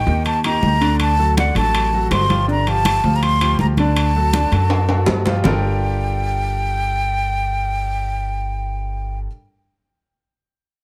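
Sophisticated and sultry, this brief Afro-Cuban jazz excerpt in G minor moves at 162 BPM, with a breathy, hollow concert flute carrying the melody up front under plate reverb, backed by clear grand piano with audible action noise, a woody, thumpy pizzicato upright bass, damped background congas and ringing metal-shell timbales that both drop out after a drum fill ending at 5.5 seconds, as the harmony shifts from an A7(b5) through D7 and G9sus4 to a closing Gm9.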